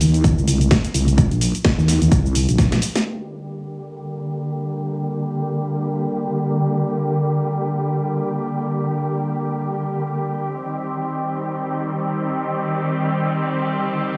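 Bass house in G minor and free time, bouncy and gritty, this cut-out opens with a nasal, wobbling vowel-sweep bass with chorus and tube saturation pumping up front over a punchy, tape-warm electronic kick and a house kit of cabasa, hi-hat and cracking snare, until a drum fill from 2.6 seconds and a band accent at 2.9 seconds hand over at 3.1 seconds to a dark, smooth chamber string section holding bowed chords with vibrato under a filter sweep and sidechain pumping, moving from Gm to Cm at 10.6 seconds in light reverb.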